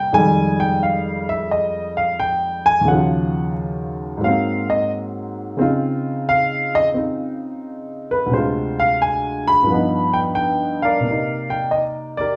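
A warm, intimate baby grand piano plays alone up front, its natural tone carrying audible action noise through a short, moody, late-night solo jazz excerpt in swung four, moving through lush ninth chords from Fm9 to Dbmaj9 before a Dm7b5 and G7b13 turn that lands on Cm9 at 11.0 seconds, all set in a wet studio reverb with a rough home-demo feel.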